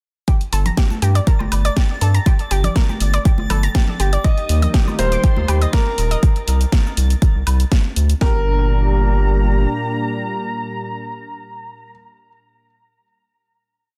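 A driving, bittersweet progressive house piece in G minor at 121 BPM opens straight into the drop, with a punchy four-on-the-floor kick and cracking snare up front, programmed hats, shaker and woodblock pumping behind them, a bright tribal loop of woodblock and congas in the background, and a nasal, chorused analog pluck cycling a 12-step arpeggio that drifts against the bar. A deep, round, tube-saturated analog bass plays off-beat from 0.5 seconds, while a reversed, granular texture holds a dreamy high note in the distance. At 4.2 seconds a clear, vintage concert grand piano enters with a repeating riff, doubled an octave higher by a mellow detuned supersaw over a smooth chorused pad, and these three, joined briefly by the bass, carry the closing Gm chord from 8.2 seconds in a dense, heavily limited, dry mix.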